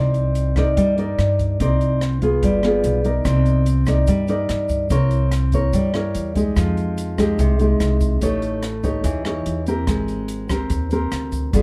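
A straight 4/4 bossa nova pulse at 145 BPM carries this intimate, wistful passage in C minor, cut from a longer piece, with an open jazz kit of hi-hat, boomy kick and rim click set in a studio room. Up front, a dark, thumb-plucked classical nylon-string guitar with fresh strings moves through Cm9, G7b9, Fm9, A7#11 and Abmaj9, over a woody, thumpy pizzicato upright bass on gut strings. From 3.2 s a grainy, mellow tube shaker sits compressed and saturated in the background, all wrapped in light reverb and a dusky, warm production.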